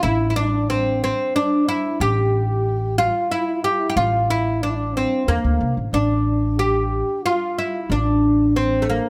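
A bright, woody oud plays a longing, soulful melody in A maqam kurd up front, joined from the start by a mellow trombone with light vibrato in the background and a thumpy pizzicato upright bass, moving at 92 BPM in a straight 3/4 through this dry, closely recorded 9-second fragment of a longer Arabic maqam ensemble piece.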